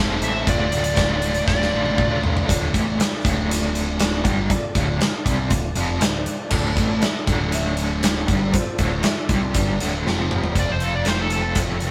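A live-in-one-room band sound with moderate studio reverb frames this driving, brooding classic rock excerpt in D minor at 119 BPM, where crunchy tremolo-treated and sludgy background guitars riff over a growling overdriven bass, a fat-snared big rock kit sits up front with fills near 1.5 and 10.1 seconds, a very quiet fat tonewheel organ with slow rotary and key click and a dark, boxy grand piano murmur beneath, and a smooth, bright lead guitar with analog delay sings briefly at the start before launching a solo at 10.6 seconds.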